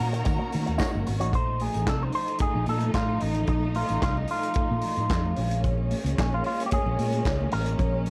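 A dark, dry studio mix carries this glamorous, driving disco cut at 111 BPM in a straight 4/4, moving from Ebm7 to F7 and then Bbm7. A punchy vintage kit with handclaps, hi-hat, kick and snare sits up front beside a growly fingered bass. A compressed envelope-filtered guitar plays accompaniment, high-tuned congas ring very quietly, a jingly tambourine appears briefly in the background, and a distant, lush symphonic string section holds sustained chords under a rich violin line that stops at 1.0 seconds, before a clean electric guitar solo enters at 1.3 seconds.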